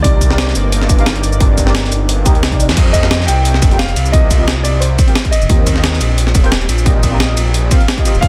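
Melancholic and soulful, this short cut from a longer liquid drum and bass piece moves with a lightly swung sixteenth-note feel over chords of Cm9, F9sus4 and Eb69. A dark, worn baby grand piano carries the melody with audible action noise and tape echo, playing until 5.8 seconds and returning briefly near the end. Beneath it, a deep, mellow chord stab with chorus, phaser and tape echo runs throughout, while a lush, warbling unison pad sits in the background and stops at 2.7 seconds. A menacing, detuned saw bass with a filter swell sits saturated and up front. A gritty, tape-toned sampler-style breakbeat kit with crash, ride, hi-hat, shaker and snare plays alongside a punchy, layered electronic kick, and a drum fill from 2.4 seconds leads to a band accent at 2.7 before the second drop at 2.8 seconds, all within a dense, heavily limited master.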